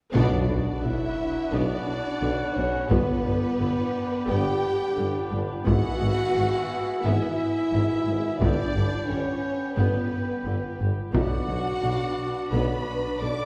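Hard-stick taiko drums drive this relentless, heroic cinematic orchestral excerpt in B minor at 87 BPM, where a lush violin section carries the vibrato-rich melody over a distant second violin line with portamento and focused violas in accompaniment, while dark French horns, mellow trombones and warm woodwinds hold sustained chords and cellos, double basses and a clear tuba anchor the bass. A barely audible timpani and a huge sub drop mark the opening impact, and a wet scoring-stage reverb places the whole orchestra further back in the room as the chords move from Bm through G and E/G# and back to Bm by 11.1 seconds.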